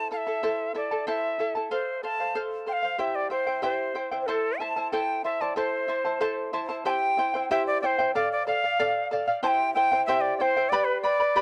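Andean folk at 93 BPM in 2/4, festive yet melancholic, with a bright, airy cane quena carrying the vibrato-laden melody through a tape echo, up front beside a fingerpicked charango whose shimmering double strings pick out chords from Am through F, C, Dm and G in a dry, close 1970s-style studio sound, cut from a longer piece.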